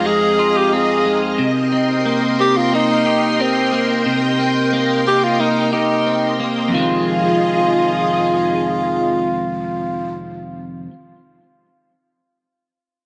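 A straight 4/4 pulse at 90 BPM carries this hazy, melancholic dream pop fragment in F minor, taken from a longer piece, where the harmony moves from Fm7 to Cm7 and returns to Fm7 at 6.7 seconds. A breathy tenor saxophone with vibrato sings the up-front solo melody through tape echo, over sustained chords from a vintage sawtooth string machine with a slow attack, sub octave and ensemble chorus. A bright, compressed clean electric guitar picks arpeggios through lush chorus and tape echo, and rings on alone after the other parts stop at 10.2 seconds, all set in a small, moderate room reverb.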